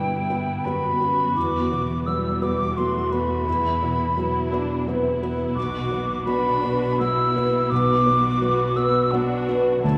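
Heard from further back in a wet scoring stage with a long, lush reverb, this moving, bittersweet excerpt of cinematic film score drifts in a rubato 3/4 over G, Esus2 and Bm. A pure, up-front concert flute sings an expressive second line with gentle vibrato, while a felt-muted upright piano adds soft, intimate accompaniment with audible action noise and a concert harp rings out fingerpicked arpeggios. A rich, lush viola section fills the middle with bowed vibrato, and a focused cello section holds the bass in the background.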